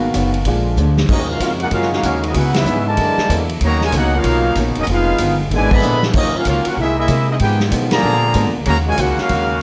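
Big band swing in E-flat minor at a brisk 190 BPM, this dramatic, brassy excerpt opens with a clear, polished baby grand piano solo, and the drums add a fill at 0.8 seconds. The warm trumpet section then takes the melody up front with plate reverb at 1.1 seconds over sustained chords and a second line from two bright, vibrato-tinged trombone sections, a woody pizzicato upright bass, a clean hollow-body archtop guitar in the background, and a big-room drum kit with a punchy kick that plays another fill near 5.8 seconds, while the band hits accents and altered and extended chords swing through a light reverb.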